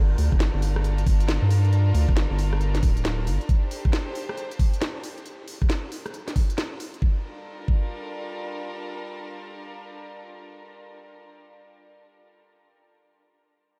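A rubbery, hollow square-wave bass sits up front in this skippy, bouncy two-step garage excerpt in G minor at 136 BPM with a swung 16th feel, playing only until 3.4 seconds under a Gm7. A knocking electronic kick holds until 7.8 seconds alongside a tape-flavoured garage kit of cracking snare, rim click and crisp hats. Behind them, a soft-attack chamber violin section sustains intimate, lightly vibrato chords with a sidechain pump through to 11.3 seconds, all in a dry, close sound.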